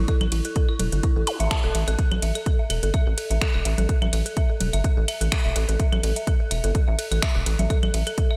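A lightly swung 126 BPM groove in 4/4 drives this quirky, sparse minimal techno cut, where a punchy, up-front electronic kick and a house kit of finger snaps, metallic hi-hats and ride cymbal sit over a rubbery, hollow square bass that pumps under sidechain compression, while an eerie, inharmonic FM synth bell riff shimmers with chorus and digital delay, claves and congas echo in the background with a roomy sheen, and a brief zap flickers at 1.3 seconds, all framed by bright 1980s-style digital production with light reverb.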